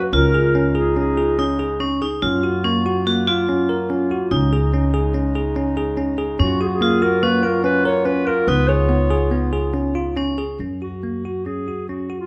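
This playful, hopeful piece of contemporary chamber music in 5/4 at 143 BPM opens with a dark, distant clarinet melody over bell-like tine electric piano arpeggios, a woody, thumpy pizzicato upright bass, a metallic hard-mallet vibraphone second line with slow motor vibrato, and a mellow, soft-attack woodwind section holding sustained chords; the clarinet drops out at 1.6 seconds and returns at 6.4, while the vibraphone and woodwinds stop at 10.6 as the F# major harmony settles onto F#5 within a moderate recital hall reverb.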